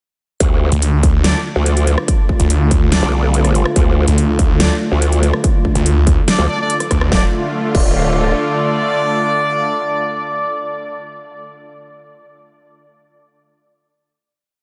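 Chaotic and menacing, this heavy wobble dubstep piece in D minor at 143 BPM with a half-time feel drops at 0.4 seconds on a distorted, up-front electronic kick and a dubstep kit of huge snare, metallic hats, rim clicks and crash, beneath a growling, overdriven growl bass with changing wobble speed, joined at 0.7 seconds by a snarling distorted saw bass playing chopped phrases, while a lush, sidechain-pumping supersaw pad and sparse, tape-echoed brass ensemble stabs carry on into a final chord from 7.1 seconds, the whole mix dreamy and soaked in long reverb.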